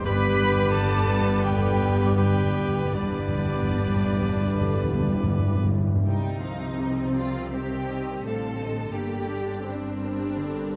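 Cinematic underscore in C dorian, longing and bittersweet, moving in a rubato 4/4 between 74 and 88 BPM. A muted violin section carries a veiled, lush melody with vibrato, while a second, more distant violin line joins viola, cello and double bass sections in dark con sordino bowing beneath. A concert harp rings with thumb-plucked arpeggios, and soft-mallet timpani give a round fill through the opening. Over the first phrase, a bright clarinet, an airy flute ensemble, a present cor anglais and a mellow French horn section holding sustained chords add woodwind and brass colour, all falling away at 5.7 s. At 6.1 s the harmony moves from G to Cmadd9 and then Gm, leaving the strings and harp alone. The sound is close and detailed, set in a moderate scoring-stage reverb with a layer of vinyl crackle.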